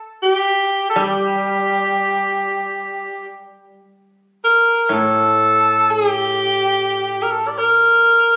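Captured on a phone in a room with club ambience and a light reverb, this short fragment of a longer piece has a casual, live-in-the-space quality. It falls within Japanese traditional chamber music, and its mood is austere and calm. A tenor saxophone carries the melody from 0.2 seconds, sitting up front as a solo voice with a light vibrato and a pop-style delivery, its tone warm yet distant and roomy. The koto enters at 1.0 seconds as accompaniment in a low register, played with fingerpicks and sounding acoustic, dry and woody, well beneath the horn in the balance. The koto drops away at 7.8 seconds, and the saxophone continues alone until the fragment ends at 8.4 seconds.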